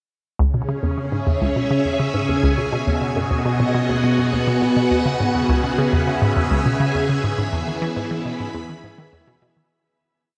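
A straight 4/4 pulse at 103 BPM drives this short, complete piece of ambient, sequencer-driven space music in C# minor, hypnotic and expansive in mood. Underneath, a hollow square pluck with a fast attack and short decay runs a bouncy step-sequenced riff in the low register, its 7-step loop drifting against the bar, colored by chorus, phaser and delay. Up front, a bright, vintage string machine holds slowly shifting sawtooth chords with a slow attack and long release, its ensemble chorus and phaser giving it a swirling motion as the harmony moves from C#m to B, back to C#m at 5.1 seconds, then to E. In the background, a detuned, resonant sawtooth texture bubbles with random filter steps around a held high note, fading in across the piece. A wet shimmer reverb with an 8.0-second tail bathes the mix, and the whole piece fades out from 6.6 seconds to its close at 9.7 seconds.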